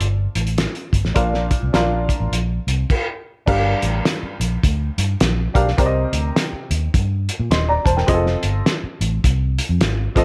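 A swung 4/4 groove at 104 BPM drives this brief, urgent, passionate cut of uptempo 1960s-style soul, with a cloth-damped, thuddy drum kit up front, its fat snare, tight kick, hi-hat and dark crash cymbal sounding muffled, gritty and lo-fi in a small room. A vintage muted electric bass, played fingered, sits up front with a round, foam-muted, amped tone, while a woody upright piano with short sustain carries the accompaniment. After a chord-free opening moment, the harmony lands on Bb at 1.2 seconds, then moves through Gm7, Cm7 and F7 from 3.5 seconds onward, all under a light reverb.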